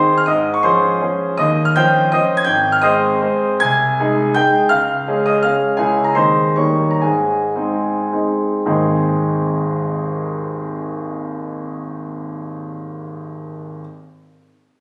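A brilliant concert grand piano plays alone in this proud, graceful romantic dance in 3/4 and Ab major, its dotted rhythms moving with rubato between 104 and 178 BPM and spanning from a deep bass up to the high treble. The harmony moves from Dbmaj7/Ab and Eb13 through Ab, Db and a darkening Dbm before settling on Ab at 7.0 s, with the tempo slowing from 5.3 to 8.7 s before a new section begins. The piano sits up front with long sustain in a moderate stage reverb, captured on a phone in the room and given added studio reverb and compression, in this short extract from a longer piece.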